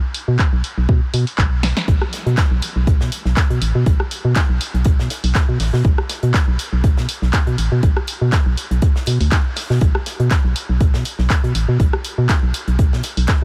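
This deep house excerpt opens with a punchy analog drum machine, its dry handclaps, hi-hat, rim click and punchy snare arriving just after the start of the track. An organ-like FM bass follows at 0.3 seconds, hollow and dark with a fast attack and a decaying tail, sitting up front and pumping against the kick, which lands at 0.4 seconds as a deep, layered electronic thump with a tape-warm edge. The groove moves at 121 BPM in 4/4 with a light 54% swing on the sixteenths, giving a smooth, deep feel. After a drum fill at 1.6 seconds, a tight metal drum kit joins at 1.9 seconds, adding a mid-forward acoustic hi-hat and medium-tuned snare, filtered thin and mixed low beneath the electronic parts. A small room ambience surrounds the whole texture as the steady section carries through to the cut at 13.4 seconds.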